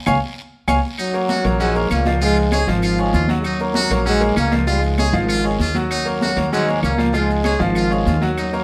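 Set in a moderate studio reverb, this driving, passionate salsa excerpt at 195 BPM opens with a band accent over bright grand piano, dark thumpy pizzicato upright bass up front, soft-handed congas, woody claves, raspy guiro and grainy maracas, before a punchy, tight trombone section takes the melody at 1.0 seconds, joined by a buzzy, scooped trumpet with metal mute on a second line, as the harmony alternates between Db and Ebm7.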